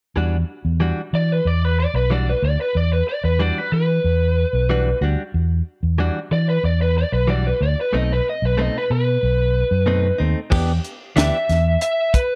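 A straight-eighth soul blues groove in 4/4 moves at 93 BPM in E minor, brooding and mournful, heard as a cut from a longer piece. A fingered electric bass sits up front with a round, amped tone, while a direct-recorded clean electric guitar plays compressed, scooped stabs bathed in spring reverb. From 1.2 seconds a lead guitar through a small cranked amp carries the melody with a dark, overdriven, picked voice, moving over harmony that shifts from Em9 to B7b9 at 7.9 seconds. At 10.5 seconds a tight funk drum kit enters with a high-tuned snare, tight kick, hi-hat and crash cymbal as the harmony settles on Em7 and the lead guitar takes a solo. The sound is dry and close, in the manner of a 1970s studio recording.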